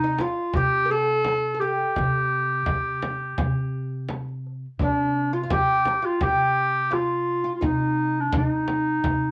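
A distant, roomy clarinet carries a longing, classical-style solo up front in this hypnotic makam ensemble fragment, backed by a fretless, plectrum-plucked oud with double strings as a second line, a dark, steel-stringed upright bass played pizzicato, a deep, compressed and saturated frame drum under soft hands, and a band-limited clay darbuka in the background, with the clarinet and oud tinted by cassette tape inside a wet studio reverb on a home cassette recording.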